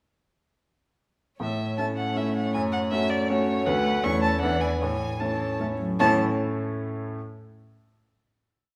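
Graceful and cheerful, this quick classical-period piece for piano quartet in 3/4 opens at 1.4 s with a focused, smooth-topped lead violin singing the theme up front with vibrato, over a brilliant concert grand piano that lays down deep bass and chords on the beats. In the background, a second violin, even and distant, and an intimate cello, played sul tasto with an airy bow, hold sustained chords in the rhythm of the tune, and the cello answers at phrase ends. The strings stop at 6.2 s, and the piano carries the final chord alone until 7.2 s in a reverberant recital hall.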